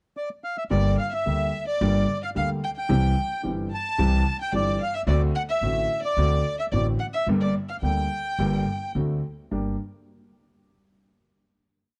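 Dramatic and tense, this short rubato tango opens with a reedy, up-front bandoneon stating a motif-based melody in period phrases at 0.2 seconds, joined by a single bowed violin that doubles it in unison with vibrato, soft attack and expressive portamento. From 0.7 seconds a clear, vintage-sounding grand piano with short sustain and a woody, thumpy pizzicato upright bass on dark gut strings drive a marcato tango rhythm in four, before the piece settles on a final chord at 9.5 seconds. The sound is a dry, close 1970s-style studio recording with small room ambience.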